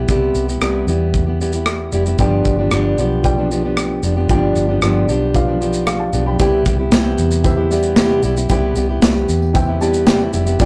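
A full-bodied, fingerpicked steel-string acoustic guitar and a round, foam-muted electric bass open this easy-going, carefree acoustic pop excerpt at 114 BPM in C major, joined by a polished, up-front studio drum kit with tight kick, rim click, shaker and snare; a woody, boxy upright piano enters at 2.2 seconds as the chords move from Cmaj7 to G7, a very quiet, jingly tambourine arrives with the return to Cmaj7 at 6.4 seconds, and the piano plays a fill at 9.6 seconds, all under light reverb in a rough rehearsal-room sound with tube saturation.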